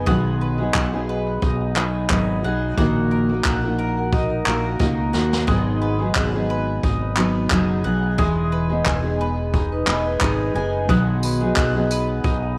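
A light reverb gives this short excerpt of reflective, tender acoustic pop a gentle sense of space, with a softly swung feel in four. A full-bodied, double-tracked fingerpicked dreadnought guitar sits up front as the accompaniment throughout, while a round fretless electric bass, direct and amped, holds down the low end. A bright bowl-back mandolin plays picked arpeggios on its double strings through a tape echo, set further back in the mix. The brushed drum kit, with its boomy kick, medium-tuned snare, handclaps and tambourine, sounds warm and rolled-off in a small room, and it plays a fill from 4.8 to 5.5 seconds. A metallic, ringing vibraphone with the motor off carries a second line, dropping out at 5.4 seconds and returning briefly at 9.7 seconds, over chords that move from B6 through D#m/A#, G#m7 and Emaj7 before settling back on B6.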